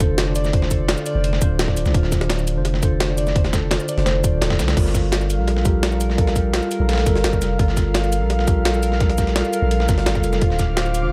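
This dreamy, melancholic liquid drum and bass excerpt opens at full drop. A mellow tine electric piano provides accompaniment through a digital delay, while a harp-like synth pluck rings out arpeggios in the background, colored by chorus and dub echo. Underneath, a deep, sine-toned 808-style bass sits up front with tube saturation, its long notes striking fast and then decaying. The drums are layered: a tight, overdriven electronic kick; a gritty jungle sampler-style kit with a pitched-up, high-tuned snare, crash, hi-hat and shaker; and a dusty soul sampler-style kit whose hats and medium-tuned snare are thinned by high-pass filters. At 5.0 seconds an airy, breathy pad enters with slow-attack sustained chords, treated with chorus and sidechain pumping. The harmony moves from Dm7 to Gm9 and returns to Dm7 near the close, all framed by a dark production with light digital ambience.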